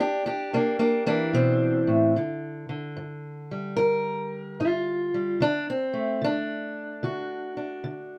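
Laid-back and gritty, this brief excerpt of acoustic country blues features a dark, up-front fingerpicked steel-string parlour guitar playing alone at 74 BPM with a swung feel, moving from C to G5 at 2.1 seconds and on to D at 5.4 seconds in a light reverb.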